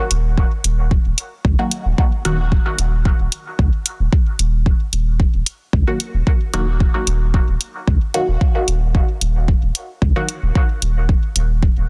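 A dense, heavily limited master with little reverb gives this hazy, cavernous dub techno fragment, cut from a longer piece, a dry, pressed-in sound in swung 4/4. An up-front, layered electronic kick and an overdriven analog hi-hat drive the groove, while a clean, smooth sine sub bass sits deep underneath with sidechain pumping. A muted, detuned chord stab with sawtooth and square-wave tones, a filter sweep, phaser and dub echo appears briefly at 1.6 seconds, then returns from 5.9 to 10.3 seconds, also carrying sidechain pumping.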